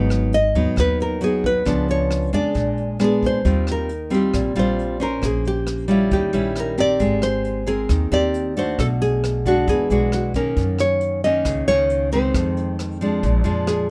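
A fingerpicked nylon-string guitar carries the melody up front, full-bodied and classical in tone, over a second fingerpicked nylon-string guitar whose accompaniment, with a touch of finger squeak, moves through jazz chords such as G#m7, C#7b9 and Abmaj9. This breezy, relaxed bossa nova, cut from a longer piece, sits at 135 BPM in a straight 4/4, with a woody pizzicato upright bass and a vintage brush kit whose tight kick, hi-hat and rim click stay back in a rolled-off studio room. Light reverb lends a soft sheen as the music shifts from its short opening section into a longer second passage at 3.4 seconds.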